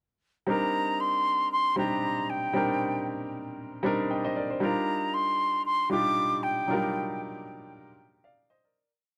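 At 0.5 seconds, an airy, metallic concert flute with vibrato and tongued notes spins hook-like motifs over a baby grand piano that plays pushed chord rhythms in drop-2 voicings, with grace notes and short fills. This late-night, hypnotic amapiano groove in C minor moves at 116 BPM with a swung 16th feel, shifting from Cm9 to Ebmaj9 at 4.6 seconds. The up-front piano has a short, warm sustain, the flute carries a delay, and a moderate booth ambience surrounds them until the piece fades out from 6.7 seconds.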